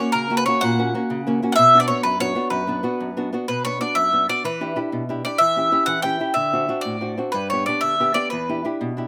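Wistful and romantic, this short excerpt of an Italian folk serenade unfolds in a lilting 6/8 at 125 BPM, with a rubato feel that lets the phrasing breathe. A bright, picked bowl-back mandolin carries the melody up front, its doubled strings ringing with a slapback echo as it sings through the tune until about 8.7 seconds. Beneath it, a fingerpicked nylon-string guitar supplies accompaniment with a boxy, intimate body, sitting a little lower in level but still close and present. The harmony in B harmonic minor moves from F# to Bm in the opening section, then shifts at 3.5 seconds into a second section that passes through Em7, C#dim/E, D7 and G before returning to Em7. Recorded outdoors with little reverb and an absence of room sound, the pair comes across dry and immediate, as though played for a listener standing just beneath a balcony.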